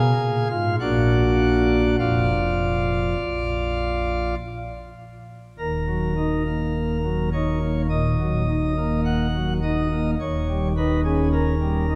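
A solo pipe organ on light, sparkling flute stops carries this dark, grave classical chorale, its romantic voicing placed up front and spanning Eb1 to Ab5 in a slow, rubato 4/4. The harmony moves from Fdim and Bb into a second passage at 5.6 seconds that settles on Ebm before reaching Eb7. A wet church reverb with a 3.4-second decay surrounds the bright stops in this short excerpt from a longer piece.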